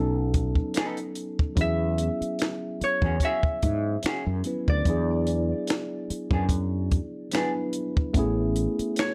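Late-night and introspective, this short slice of a longer neo-soul R&B piece settles into a slow 73 BPM groove in 4/4 with a gentle sixteenth-note swing. A fingerpicked Celtic harp carries the melody in a ringing, plate-reverbed voice, while a worn, slightly out-of-tune tine electric piano, heard through a combo amp and placed up front, supplies the accompaniment. Underneath, a round, punchy fretless electric bass sits forward in the mix with a lush chorus, and a compact cocktail drum kit enters at 0.3 seconds with finger snaps, hi-hat, a punchy kick and a high-tuned snare, all dry and natural. A clean, picked hollow-body archtop guitar adds a dark second line from 0.8 to 7.5 seconds, also bathed in plate reverb. The chords move from B7 to E69 and E7 before landing on Amaj7, all wrapped in a dark, lightly reverberant production.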